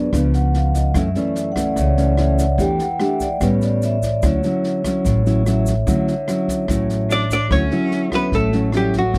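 A ringing, metallic vibraphone takes the solo through the first 7.5 seconds of this breezy, romantic bossa nova excerpt in D major at 146 BPM, backed by thumb-plucked classical nylon-string guitar, a woody, thumpy pizzicato upright bass up front, an airy jazz kit with a boomy kick and rim click, and a grainy tube shaker in the background. The harmony moves from C#7b9 through F#m7, Em7 and A9 to Dmaj9. At 7.1 seconds a dark, clean, hollow-body archtop guitar takes up the melody while a biting, intense bowed cello with vibrato adds a second line, all in a dry, close 1970s-style studio sound.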